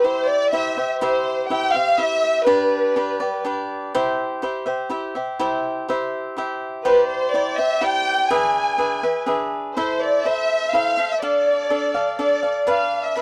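Proud and festive, this Mexican folk excerpt moves at 124 BPM in a straight 3/4, starting in C major and turning to A minor at 9.8 seconds, with the tuning set slightly low at A4 = 435 Hz. A rich violin section carries the melody with vibrato, a soft attack and expressive bowing, sitting up front in the mix. The violins play from the opening until 3.4 seconds, then return at 6.8 seconds and continue to the end. Underneath, a picked cavaquinho supplies crisp, acoustic accompaniment throughout, also placed up front. The harmony moves from C and G through Cadd9 and E7 before the minor turn to Am, Dm and Bdim. The sound is dry and close in a 1970s studio style, touched by light reverb.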